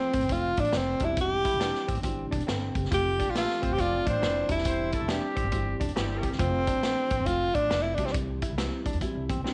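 A small-room ambience with light reverb and a softened, vintage top end frames this brief cut from a longer, uplifting and joyful 1960s-style soul tune with a swung, uptempo groove. Up front, a breathy tenor saxophone carries the melody in a jazz style, with vibrato and scooped notes, until about 8.1 seconds. The vintage drum kit also sits forward, its punchy kick, medium-tuned snare and hi-hat rolled off at the top, while a pizzicato upright bass with steel strings supplies a woody low end. In the background, a dark, mellow upright piano with a boxy, long-sustaining tone plays accompaniment, and a clean, compressed hollow-body electric guitar, played with the fingers, repeats a riff. A clear, tight horn section adds a second line from 3.2 to 6.3 seconds over chords that move between F and C.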